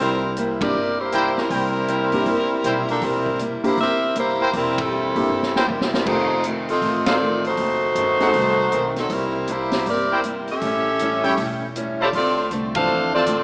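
A swung 4/4 groove drives this brassy, joyful big band swing fragment, cut from a longer piece. A tight, up-front saxophone section carries the melody with vibrato while a clear trumpet section adds ensemble stabs, and the band hits accents throughout. Underneath sit a woody pizzicato upright bass, a picked parlour acoustic guitar with fresh strings, and a distant, roomy drum kit with a boomy kick that plays a fill at 5.3 seconds; a natural-sounding grand piano comps in the background, dropping out at 8.3 seconds and returning at 11.2, all set in concert hall reverb with a small-speaker tone.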